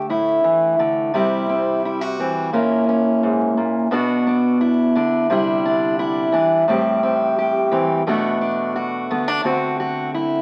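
Heard through the crackle of a very old 78 rpm record, with a moderate club-like reverb around it, this short folk fragment, cut from a longer piece, features a lone fingerpicked steel-string acoustic guitar set up front, its tone warm on fresh strings and its finger squeaks audible. The haunting, reflective mood comes from a wandering progression that moves from Dsus2 through C, A#m7b5 and Bm, then Cadd9, Am7 and Bm7, before resting on D7 near 9.4 seconds. Across the 10.4 seconds, the guitar stays between G#2 and G4 in a straight 4/4 feel.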